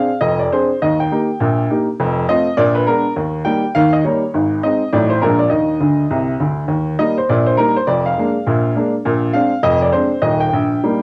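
Playful and exuberant, this short excerpt of stride jazz piano bounces along at 204 BPM in 4/4 with a swung eighth-note feel in Eb major. A solo upright piano carries the whole piece, its tone clear, woody and up front, reaching from Eb1 up to G5. The harmony opens on a rootless Bb9 before settling into Eb, then moves through F7, Bb7b9, Ab, Adim7 and Cmadd9. A quick piano fill from 5.8 to 6.7 seconds leads back to Eb as the opening phrase repeats, closing on Eb at 10.2 seconds. The sound is a home cassette recording with tape coloring on the piano, set in a wet small room with a short reverb tail.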